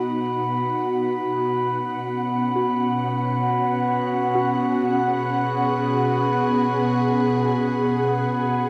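An airy, detuned pad holds sustained chords up front in B, its ensemble chorus, phaser and shimmer reverb lending a luminous, weightless glow. Beneath it, muted felt-like synth keys fade in with warbling arpeggios in the background, and a glassy, pure glass harmonica rings on a high B. At 3.0 seconds a nasal, evolving analog drone enters, all floating in free time inside a wet cathedral reverb with a dark, warm production in this ambient fragment cut from a longer piece.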